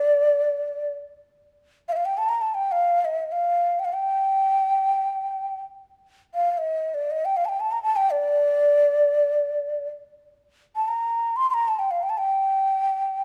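A moderate recital-hall reverb, with a decay of about 1.7 seconds, surrounds a single end-blown reed-cane ney placed up front. This short Persian piece unfolds in free time, cut from a longer performance, and carries a mood of longing and melancholy. The ney plays alone throughout, its tone breathy and mellow, moving between D5 and C6 with expressive vibrato and tongued notes. The opening material runs to 10.3 seconds, and the same section returns from there until the clip ends at 13.2 seconds.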